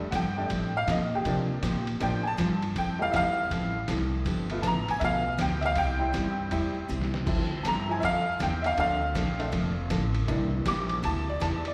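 A cheerful, swinging western swing passage in F major at 160 BPM opens on a bright, worn, slightly detuned upright piano taking the solo from 0.0 s, bathed in plate reverb and slapback echo, over a woody, gut-strung pizzicato upright bass. A full-bodied, picked jumbo steel-string acoustic guitar, sharing the piano's plate reverb and slapback echo, fills in beside a muffled, compressed, pitched-down sampler-style drum kit with a thumpy kick, which adds a short fill at 6.9 s. The whole cut, taken from a longer piece, sounds like a live gig heard through a club PA, with a moderate room reverb around the band.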